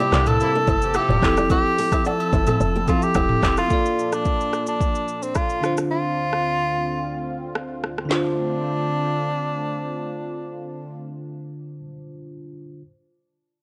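A dry, gritty recording carries this sultry, mellow afrobeats excerpt in D minor at 109 BPM, where a smooth tenor saxophone with light vibrato leads up front over a bell-like tine electric piano with phaser, a detuned sawtooth pad with chorus, and a fingerpicked flamenco guitar riff that drops out at 3.3 seconds. Very quiet agogo bells and woodblock, a brief distant horn section and a punchy log drum bass with a woody tone join the groove early, with the percussion and bass falling away at 3.6 seconds, while an afro-pop drum kit with a deep kick, metallic hats and vintage 12-bit sampler grit drives on until it stops at 8.2 seconds, leaving the electric piano alone from 11.1 to 12.8 seconds.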